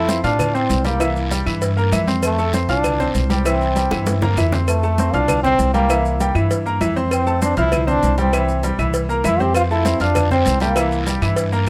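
A brisk, straight salsa groove moves between F and C7, anchored by a warm, up-front pizzicato upright bass with steel strings and a background bed of thin-skinned congas, tight high-tuned cowbell and bongos, woody claves, grainy maracas and a raspy guiro that drops out at 4.7 seconds and returns at 9.6. Over it, a present solo trombone with light vibrato carries the sunny, danceable melody, while an intimate, brilliant baby grand piano with short sustain and audible action noise accompanies up front. A drum fill from 3.9 seconds leads into the repeat of the opening section in this lightly reverberant excerpt cut from a longer piece.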